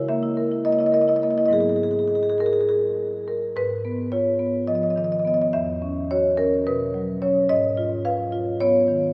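In a 7/8 with a free, rubato feel, this short, playful contemporary classical passage for solo marimba, cut from a longer piece, moves from its opening section into a second one at 3.6 s, with chords passing from C#m6 and G#m7 through Esus2 and Bsus2 before settling back on G#m6. The marimba, played with medium mallets on rosewood bars, has a woody, warm, slightly vintage and band-limited tone and spans a range from E2 to E#5. It sits up front, yet the listener hears it from further back in the room, bathed in a wet cathedral reverb that lets every note hang in the air.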